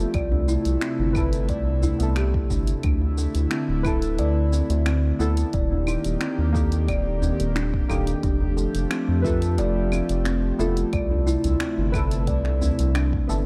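A mellow chord stab with vintage sampler grit, chorus, delay and sidechain pumping opens this meditative, earthy organic downtempo excerpt alongside an airy, breathy pumping pad, a woody kalimba ringing out delayed arpeggios and a round, tube-saturated analog bass up front, while from 0.1 s an electronic kick and a small-room deep house kit of claves, finger snaps, hi-hat and shaker set a straight groove, joined at 0.3 s by a very quiet acoustic djembe, the whole set in light reverb and a dark production.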